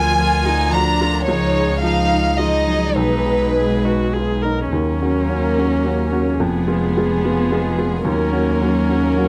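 Reflective and fragile, this short cut from a longer neoclassical piece for piano and strings moves in a rubato 3/4 at roughly 101-111 BPM in Eb minor. A chamber violin section carries the melody up front, its bowed tone intimate and soft-attacked with light vibrato and a sul tasto hush, while a single cello sings a second line in the background with expressive portamento. A woody, slightly detuned upright piano with short sustain and a focused solo viola fill in the accompaniment, and a bowed double bass sits close and even beneath them. Behind the strings, a hollow, flute-like pad with a slow attack holds sustained chords through a chorus effect. The recording is dry and gritty, with little reverb, and the harmony passes from Bb/D through Dbadd9 and Abm/Cb before the second half settles on Ebm7 and Fdim.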